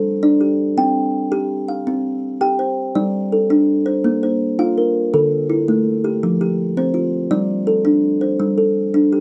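In a straight 12/8 at 110 dotted-quarter beats per minute, this trance-like, hypnotic passage of southern African traditional music in G dorian, tuned to A4 = 441 Hz, features a solo kalimba playing alone from 0.0 to 9.2 seconds, its woody, hollow-box thumb plucks ringing up front across a range from D3 to G5 within a moderate studio ambience and a dark production.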